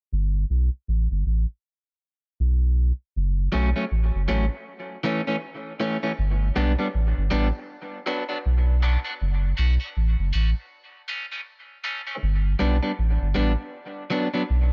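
A deep, round sub bass anchors this hypnotic, meditative dub reggae passage, its sine-like tone sitting up front with a fast attack and long sustain between F#1 and B1. It carries the opening break by itself before a slightly broken-up electric guitar enters at 3.5 seconds. The guitar is picked, compressed and warm, placed forward in the mix, thinned by a high-pass filter and treated with dub echo. A filter sweep colors the guitar from 6.2 to 12.2 seconds. At a relaxed 79 BPM in 4/4 with a gentle sixteenth-note swing, the music sits in F# Phrygian and cycles through F#m, A, G and Bm inside an echo-heavy digital ambience, ending as a section cut from a longer piece.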